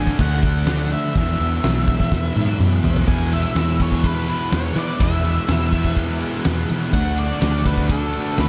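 A huge, hall-sounding drum kit with a fat snare, punchy kick and bright cymbals drives this blissful, dreamy shoegaze and dream pop excerpt at 125 BPM in E mixolydian, entering at 0.1 s and rolling into a fill from 2.1 to 3.1 seconds as the music moves into a new section. A thick, warm fuzz guitar with analog chorus plays a riff, a raw overdriven garage guitar soaked in reverse reverb adds another riff in the background, and a dark octave-fuzz lead carries the melody through tape echo. A round, foam-muted fingered bass anchors the D and E chords, and a very quiet, jingly tambourine sits close and dry from 0.7 s, all within light reverb and small-room ambience.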